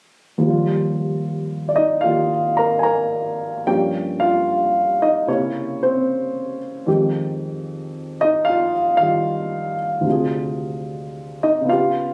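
Solo jazz piano in Eb major, relaxed and sophisticated, moving at 75 BPM in 4/4 with a swung, rubato feel. A dark baby grand carries the whole short passage from 0.4 to 12.1 seconds, ranging from D2 up to Bb5 with a mellow, intimate tone, short sustain and audible action noise that keeps it natural and up front. The harmony opens on Ebadd9, then drifts through Gm7b5, C7b9 and Fm9 before reaching Dm7b5 at 10.1 seconds. Captured on a phone in the room, the sound carries a light club reverb and compression that add a candid, late-night character. Cut from a longer piece, it plays as a single unhurried section.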